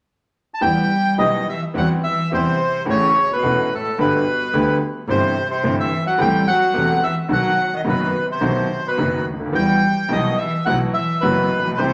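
This passionate, tense tango excerpt is bathed in a wet, large studio reverb that gives the ensemble a sense of depth. A reedy, dark bandoneon carries the melody up front from 0.5 seconds, its airy tone sitting above the other parts. Moments later a rich, focused cello enters as a distant second line, bowed by a single player with vibrato. Beneath it, a clear concert grand piano with a vintage character and deep bass supplies the accompaniment, while one bowed double bass anchors the low end, close, smooth and even, with its own vibrato. Over a rubato feel, the harmony moves from E minor through C over E, A6, G, C over G and A minor seventh to a tense B chord, then settles on E minor add nine before closing on a suspended B, with the four parts playing until 11.9 seconds.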